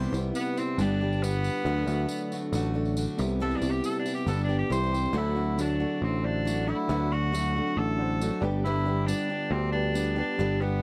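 Folk rock with a heartland rock feel, this warm, nostalgic excerpt moves at 138 BPM in a straight 4/4 in D mixolydian. It features an edgy, punchy tenor saxophone solo that enters at 0.4 seconds with light vibrato and a forceful pop style over a growly, up-front picked electric bass, a slightly broken-up riff from an electric guitar through a small old amp, bright picked steel-string acoustic guitar, and a jingly, band-limited tambourine. At 5.2 seconds the second section begins on a D chord and a very quiet, woody, slightly detuned upright piano joins the accompaniment. The sound is dry and close, with little reverb, in the manner of a 1970s studio recording.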